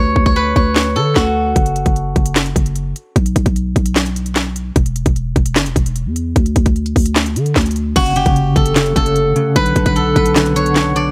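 Hip hop and trap in F# phrygian at 150 BPM with a half-time feel, this melancholic, menacing piece pairs a bright, silvery fingerpicked steel-string zither melody with a growling, buzzy 808-style bass, up front alongside a trap kit of hard-clipped kick, sharp snare, crisp hi-hats, handclaps and crash that enters at 0.2 seconds. After the zither falls away, it returns at 8.0 seconds as a clean, fingered electric guitar joins with tremolo, and at 9.0 seconds a deep, moody ambient pad with chorus and its own reverb settles in the background. The mix stays dry and close.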